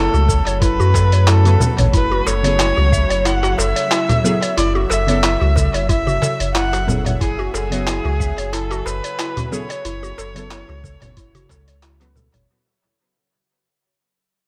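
A rich, expressive bowed kamancheh with vibrato and portamento carries the melody through this earthy organic downtempo excerpt, set over a round, up-front sub bass, a woody, warbling FM mallet-like pluck playing arpeggios, soft detuned chord stabs and a tense string-like drone in the background, with a gritty, tape-dusted sampler-style kit of cabasa, congas, handclaps and hi-hat, a thumpy electronic kick, and a crisp metal-shell darbuka entering at 2.3 seconds, all in an echo-heavy mix that fades out from 5.5 seconds.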